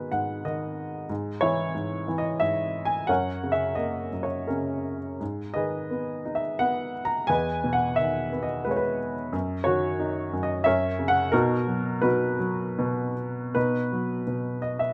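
Warm and hopeful, this lyrical classical piece for solo baby grand piano moves in a rubato 3/4 between about 75 and 94 BPM in B major, tuned to A4 = 438 Hz, and is cut from a longer work. The intimate, up-front piano spans E2 to A#5, opening with a brief fill before the harmony passes through G#m7, C#m/G#, F#, G#m and Emaj7, then settles through D#m7/F# and F# onto B just before a new section arrives at 13.6 seconds. Close, detailed microphones and light reverb keep the instrument present, with its action noise clearly audible.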